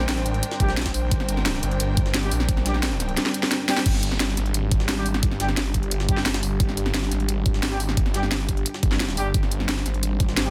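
Mechanical and dark, this excerpt from a longer piece of technical drum and bass drives at 175 BPM in G phrygian, running as one continuous drop built on Gm before shifting to a bare G5 at 3.9 seconds. Up front, a snarling, growling sawtooth bass sits low between G1 and Bb1, distorted and overdriven with a detuned unison and moving notch, while a deep, moody analog pad holds sustained chords behind it with chorus and slow-attack swells, both pumping against the sidechain. The drums stack an overdriven, knocking electronic kick and a layered kit with a cracking snare and bright hats, both up front, over a gritty, pitched-up jungle sampler-style kit in the background whose high-tuned snare and hats are thinned by high-pass filtering. A rich chamber string section adds bowed, vibrato-laden texture in the background until 3.9 seconds, and from 0.6 seconds a warm brass ensemble with light vibrato adds classical-style stabs through a delay. 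A drum fill bridges the two halves of the drop from 3.2 to 3.9 seconds, and the whole is dry and densely limited in a modern master.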